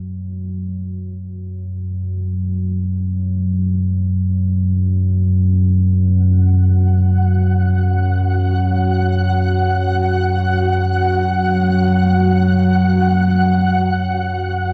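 Cavernous and unsettling, this dark ambient drone unfolds in free time as a cut from a longer piece. A deep, ominous rumbling drone sits up front from the start, its wave-folded triangle and sawtooth tones swelling in slowly and sustaining low between F#2 and F#3. At 6.9 seconds a fainter flickering, grainy granular texture with detuned triangle tones and analog chorus joins high above, the whole dreamy mix soaked in a huge reverb and marked by lossy compression artefacts.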